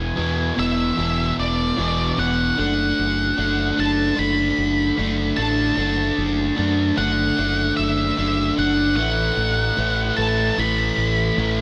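A steady, straight 4/4 pulse at 75 BPM carries this soaring, cinematic post-rock clip, cut from a longer piece, which builds throughout its 11.6 seconds. Up front, an overdriven electric guitar, picked and double-tracked with a warm tone, drives the riff from E2 to D4. Beneath it, a growling fingered electric bass, direct and amped with overdrive, holds the low end between E1 and F#2. Above them, an octave-fuzz lead guitar, dark and distorted with analog delay, picks out the melody between D5 and B5. The harmony moves from E7 to D/F# at 2.6 seconds and lands on A5 at 9.0 seconds, all set in light reverb and digital ambience.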